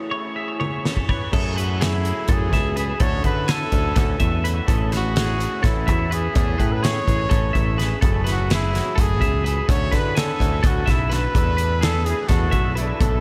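This bright, wistful math rock and midwest emo passage opens on a slightly broken-up, lo-fi electric guitar through a small old amp, its chorused accompaniment sitting in the background. It is joined almost at once by a clean, twangy twelve-string electric guitar playing compressed, delayed arpeggios high above. A loose indie drum kit enters with a fill at 0.6 seconds, its fat snare, boomy kick and dark cymbals up front in a pumping studio room. A picked electric bass arrives at 1.3 seconds with a direct tone as the harmony moves through F#m11, Dmaj9 and Amaj7 in 7/8. A warm trumpet takes the melody from 1.6 seconds, pop-styled with light vibrato and trailed by delay, while huge ambient reverb soaks the dreamy mix until the passage reaches an E7sus4 chord and is cut off.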